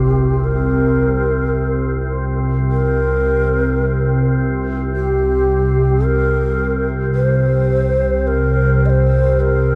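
This ambient excerpt in free time feels vast and ominous, resting on a single C7sus4 harmony throughout its 9.8 seconds. An organ-like drone sits up front in the low register, its detuned, sine-like unison tone blooming in with a slow attack and hanging on through a long release, thickened by ensemble chorus and its own built-in reverb. Above it, a long shakuhachi carries the melody between G4 and Eb5, its end-blown bamboo voice breathy and mellow, with vibrato, tongued notes and a touch of chiff, its highs rolled off and trailed by tape echo. A bronze singing bowl struck with a wooden striker rings just at the edge of hearing, metallic yet smooth, with a slow beating that lends a meditative shimmer. The dark production is steeped in a cavernous cathedral reverb with a 5.1-second decay, giving the three parts a solemn, spacious glow.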